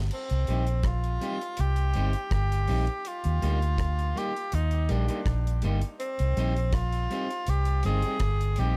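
A dark, round, foam-muted electric bass sits up front in this brief roots reggae excerpt at 81 BPM, moving between Cm and Eb in a warm, uplifting mood. A clear tenor saxophone with light vibrato carries the solo melody through dub echo, while a dry acoustic drum kit with a tight kick, hi-hat, rim click and crash plays alongside. From 0.5 seconds, a bright, twangy, slightly broken-up picked guitar adds accompaniment through spring reverb and dub echo, all within a small room ambience and an echo-heavy mix.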